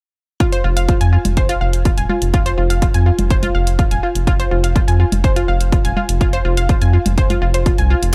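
A dry, gritty hardware recording with a digital ambience frames this cinematic, melancholic melodic techno excerpt in F minor, moving at 124 BPM in a straight 4/4. A heavy, layered, tape-warm electronic kick with studio reverb anchors the groove beside dry electronic hi-hats and congas, both pumping with sidechain and set in the same reverb, while a round, deep, dark analog bass, sidechain-pumped and up front, enters at 0.6 seconds. Above them a bright, detuned analog pluck plays decaying arpeggios through chorus, tape echo and sidechain pumping.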